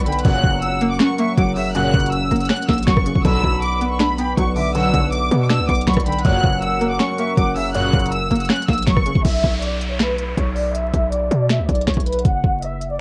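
A half-time trap groove in 4/4 drives this eerie, menacing hip hop excerpt, with an overdriven electronic kit sitting up front: knocking kick, sharp snare, crisp hi-hats, finger snaps, rim clicks and a crash, all given a small-room, tape-worn grit. Beneath it, a punchy, heavy 808-style bass with a fast attack and decaying tail carries the low end through the full 13 seconds. A lush, bowed violin section leads the melody with smooth vibrato, filtered and softened by tape, while a breathy, close-miked flute traces a second line with tape echo until about 8.1 seconds. The harmony moves between F# and Bm, filled out by a twangy, warbling resonator pluck with chorus and phaser, a deep, moody analog pad holding sustained chords, and juicy, resonant polysynth stabs with filter sweeps. At 9.2 seconds the pluck and pad drop away and an electronic downlifter slides in, all wrapped in a lo-fi home-cassette sound with vinyl crackle and digital ambience.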